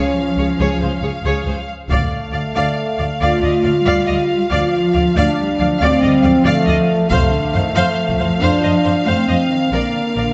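A steady 12/8 pulse at 92 BPM, counted in dotted quarters, carries this majestic, adventurous cinematic passage, cut from a longer orchestral film score, as a distant violin section holds the melody on F5 above a second violin line, rich bowed violas and a mellow, roomy French horn section sustaining chords through a progression from Db to Dm, F and Bb. Close, soft-attacked cellos and a focused double bass section, entering at 0.4 seconds, anchor the low end with lush vibrato, while a distant taiko ensemble struck with hard sticks booms in at 1.9 and 7.1 seconds. A huge, barely audible reverse cymbal rises under the final Bb chord at 9.7 seconds, all set in the wet reverb of a scoring stage.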